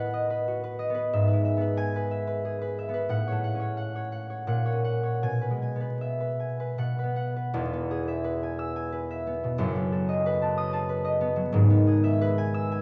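In a flowing triple metre with gentle rubato, this peaceful, graceful classical piece for solo concert harp unfolds as a brief cut from a longer work. The fingerpicked harp sits up front with a warm, ringing, acoustic tone spanning E1 to E6, moving through a chord progression and shifting into a new section at 7.5 seconds. A wet recital-hall reverb surrounds the instrument, while vinyl crackle and studio ambience add an aged patina.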